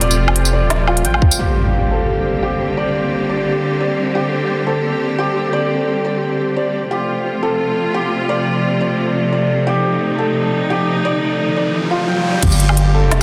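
Half-time drum and bass with a tense, heavy mood, this cut from a longer piece opens on a drop where a growling 808-style bass with tube saturation, an up-front organic electronic kit with woody snare, crisp hats, tambourine and woodblock, and a tight overdriven kick hit before falling away at 1.4 seconds, leaving clear, biting symphonic strings pumping on sustained chords, a shimmering hammered santur spinning filtered, delayed arpeggios, and a faint bright gated texture pulsing in the background, framed by an electronic impact and a riser that brings the full beat back at 12.4 seconds under lush hall reverb.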